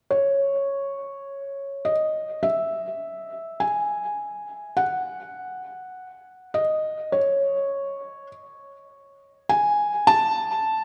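A felt-muted upright piano plays alone from 0.1 to 10.8 seconds in this slow, melancholic and reflective ambient excerpt, staying high in its range. Its tone is soft, mellow and intimate, sitting up front with the natural action noise of the instrument clearly audible. A diffuse ambient delay trails the piano, and a wet concert hall reverb surrounds it with a long, spacious tail.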